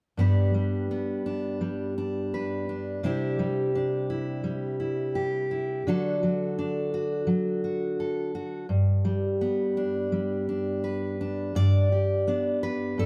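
Hopeful and nostalgic, this short folk passage for solo fingerstyle acoustic guitar moves at an unhurried pace in a straight four, cut from a longer piece. A single fingerpicked steel-string dreadnought carries everything from 0.2 seconds to its close at 13.1 seconds, sitting up front with a bright, full-bodied tone that carries the sparkle of fresh strings. The harmony travels from G to Cadd9, then to D and back home to G, giving the music a gentle, settled sense of return. Around 11.6 seconds the passage turns toward a new section just as the excerpt ends. A moderate studio ambience lends the guitar a natural sense of space.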